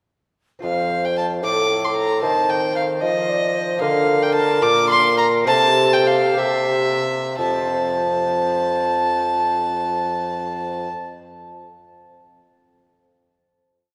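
A nasal, gut-string violin with an airy bow carries the melody up front in this flowing, dance-like baroque-style sonata movement in 6/8, with a pure wooden baroque flute adding a soft counter-melody behind it, a mellow bassoon walking the bass, and a delicate fingerpicked lute rolling chords on double strings, all set in a wet church reverb as the music slows from 3.0 s before settling onto a final chord at 7.4 s.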